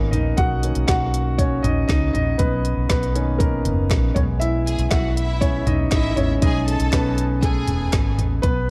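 Warm and hopeful, this short excerpt from a longer piece is piano-driven pop at 119 BPM in a straight 4/4, moving from Bmaj7 to Amaj7 at 4.2 seconds. An open, up-front concert grand carries the accompaniment and the solo spotlight throughout, its warm tone and deep bass spanning D#3 to F#5. Beneath it, a vintage muted fingered electric bass sounds round, punchy and foam-muted, while a deep house drum kit of layered, electronic character brings a deep kick, woody snare, smooth hats and toms. A group handclap, hollow and close and dry, sits very quietly in the mix from 0.9 seconds. At 4.7 seconds a lush studio violin section enters as a second line, its bowed ensemble tone rich with vibrato and a smooth top. The production is dark with light reverb.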